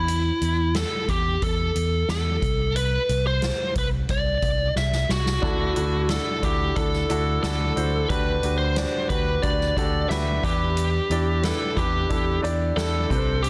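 A bright, overdriven lead guitar carries the melody from the opening moment of this uplifting, anthemic piano-driven pop excerpt, played up front over a growly, punchy picked electric bass. A soft-mallet acoustic drum kit joins almost at once, its boomy kick, medium-tuned snare, hi-hat and dark cymbals giving a natural, hall-like feel in straight 4/4 time. The harmony moves through suspended colours, from Esus4 to Csus2, and a drum fill between 4.8 and 5.4 seconds leads into the entrance of a clear concert grand piano at 5.4 seconds. The polished piano, with deep bass and short sustain, adds present accompaniment beneath the guitar line as the chords shift through Dadd9, Gmaj7/D and Em7. Studio reverb surrounds the parts, and the dense, heavily limited modern master keeps the sound full and forceful.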